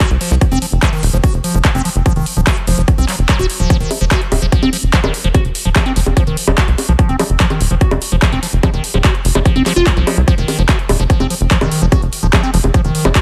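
Psychedelic trance at 146 BPM in a straight 4/4, this intense, driving excerpt is cut from a longer piece and runs about 13 seconds, opening on an F5 chord. A punchy, overdriven electronic kick drum sits up front, joined by a layered big-room dance kit whose bongos, handclaps and metallic hi-hats carry their own overdrive. Underneath, a tight sequencer bass built from sawtooth and square waves delivers dark, decaying filter plucks with a fast attack, pushed up front from 0.1 to 13.1 seconds. Over this, a squelchy, resonant liquid acid bass plays a riff with filter sweeps, treated with phaser, sidechain pumping and dub echo. The mix is dry, with little reverb, keeping the low end and percussion close and forceful.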